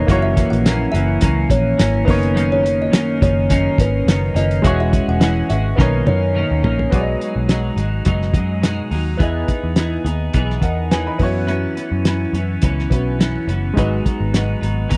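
Nostalgic and sunny, this indie and bedroom pop excerpt moves at 105 BPM in 4/4 with a light swing on the sixteenths, set in B major. A cloth-damped drum kit sits up front with a thuddy, muffled character, a fat snare and tight kick, its gritty, saturated tone rolled off at the top, and it plays a fill from 5.8 to 6.9 seconds as the music passes into its second section. Beneath it, a vintage muted picked electric bass gives a dark, round, foam-muted low end, while a twelve-string electric guitar rings bright and twangy through lush chorus and a warbly pitch drift. A clear upright piano adds intimate, woody accompaniment with short sustain and audible action noise, colored by cassette tape. A kalimba carries a second line through lush chorus and tape echo until 6.3 seconds, its hollow, boxy thumb plucks ringing over chords such as Bmaj9/F#, E69 and Bmaj9, all captured in a dry, close 1970s-style studio sound.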